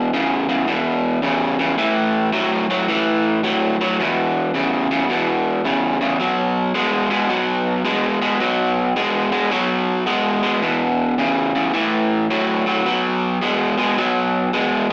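This sounds like a live club gig caught through the venue's PA, with a small-speaker quality, light reverb and the ambience of the room. It is a short cut from a longer blues piece, mournful and soulful in mood, with a swung 4/4 feel. A single electric guitar carries the whole passage alone from 0.0 to 14.9 seconds. The guitar is crunchy, bright and overdriven, picked and placed up front, with a slapback echo trailing each note. It stays low, between E2 and G#3, and moves through E5, A5 and B5 power chords, returning to E5 at 10.6 seconds before a quick turn through A5 and B5.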